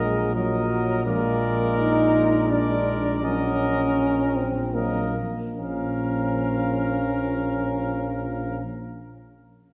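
Solemn and heroic, this classical brass quintet excerpt in Bb minor unfolds in a rubato 3/4 at 72-85 BPM, slowing through its first 5.6 seconds as a clear cornet carries the melody over a bright trumpet's second line with light vibrato, a prominent French horn with soft attack and vibrato, a soft-edged trombone set back in the background, and a mellow, roomy tuba holding the bass up front, the ensemble heard from further back in a wet concert hall as the harmony moves from Ebm/Bb through Bb7 and settles on Bbm at 5.6 seconds.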